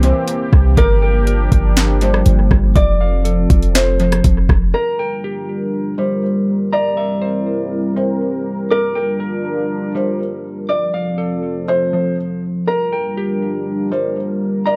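A half-time 4/4 groove at 121 BPM opens this atmospheric cloud-rap excerpt in G dorian. An overdriven, echoing R&B drum kit of soft kick, sharp snare, rim click and hi-hat sits up front beside a deep, boomy 808-style bass, and both drop away by 4.7 seconds. A dark, detuned analog pad with chorus and sidechain pumping holds sustained chords over C7, Gm7 and F, while a thick-felt upright piano carries a soft, intimate melody and a clean, fingered electric guitar plays arpeggios, the piano and guitar each filtered and trailed by analog delay, in a dry, echo-heavy mix that feels spacious and ethereal through 14.8 seconds.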